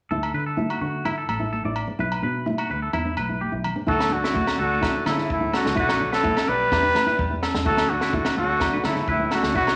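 This sunny highlife guitar band plays at 127 BPM in D major. It opens with a thumb-plucked nylon-string guitar, clean, twangy electric guitar arpeggios, a round, dark fingered electric bass and bright, damped congas in the background, with ringing agogo bells joining at 0.2 seconds. At 3.9 seconds a soft-attacked trumpet takes the melody up front with light vibrato, a raspy, gritty tenor saxophone adds a second line in the background, and a distant, roomy cocktail drum kit arrives with a punchy kick and high-tuned snare over chords cycling through Dadd9, Bm and Em in a moderate large studio reverb.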